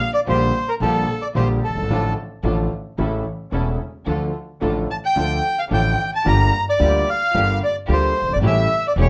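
Melancholic and dramatic, this tango in D minor moves at 110 BPM with a rubato feel, the reedy, dark bandoneon carrying the melody up front while a single bowed violin, soft with vibrato and portamento, traces an expressive second line in the background. From 0.3 s an intimate concert grand piano with audible action noise and deep bass supplies the accompaniment, a muted string section con sordino adds veiled stabs, and a woody pizzicato upright bass anchors the low end. A moderate club reverb surrounds this brief passage, cut from a longer piece.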